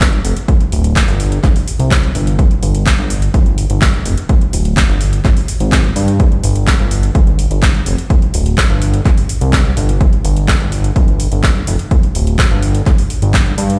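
A fat, nasal analog bass with a detuned sawtooth bite, plucky filter and sidechain pumping drives this dramatic melodic techno excerpt in a straight 4/4, heard alongside a punchy, layered electronic kick up front and, lower in the mix, a produced techno kit of handclaps and metallic hi-hats, all heard as if played on a big sound system in a bare room.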